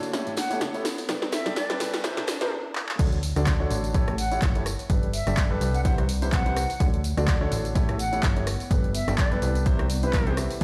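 A stone-room reverb gives this euphoric piano house excerpt at 126 BPM in D major its echoing big-system sound, as a polished grand piano riff under a low-pass filter sweep and a plucky wave-folded analog bass pump beneath punchy drum-machine claps, hats and a tape-warm kick, with a wobbly tape-like pad sustaining quietly, while an airy flute melody with vibrato and dub echo floats over a build-up with a riser, a quiet tambourine and a stop at 2.5 seconds before the drop at 3.0 seconds.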